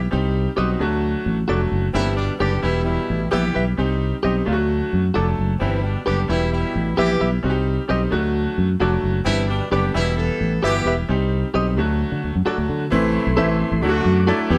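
Uplifting and joyful, this soul excerpt moves at 131 BPM in a straight 4/4, with a bright, woody upright piano and a growly, punchy fingered electric bass up front from the start while a clean, twangy direct-recorded guitar adds compressed stabs from 0.6 seconds. A smooth-topped horn section carries a second line from 1.9 seconds over a cycling Cm, D, G and Em progression, all captured as a band playing live in one room with light reverb. At 12.9 seconds the harmony turns to Am and D as a soft, flute-like tonewheel organ slips into the background with sustained chords through a slow rotary speaker.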